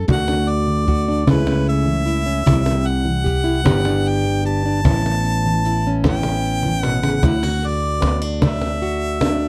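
A slow, straight 6/8 at 50 BPM carries this gentle, pastoral acoustic folk fragment in D major. A full-bodied, fingerpicked jumbo steel-string guitar sits up front over a round, punchy fingered electric bass, while a small-room cocktail kit with a high-tuned snare stays dark in the background and a woody cajon with faint snares sounds distant. A bright harmonica with light vibrato sings a classical-style solo over D, A/C#, C, G and Aadd9 until a drum fill at 6.6 s leads back to D at 7.2 s, all in a dry, close 1970s-style studio sound.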